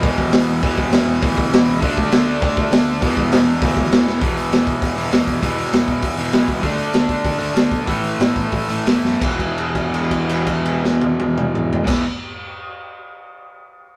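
Punk rock with a rebellious, energetic charge, this short excerpt from a longer piece drives along at 167-201 BPM in a straight 4/4. Two electric guitars hammer out riffs throughout, one bright and overdriven, the other distorted and set further back, both picked and compressed. A dark, round fuzz bass with overdrive sits in the background, while a raw garage drum kit sits up front with a punchy kick, a medium-tuned snare, hi-hat, toms and crash, its sound saturated and gritty with a rolled-off top and a pumping small-room character. Drum fills land at 4.1 and 9.0 seconds, the tempo slows from 6.6 seconds, and a held note rings from 9.2 seconds as the harmony returns to E5 after moving through D5 and A5. The whole take has the rough feel of a rehearsal-room recording with light reverb.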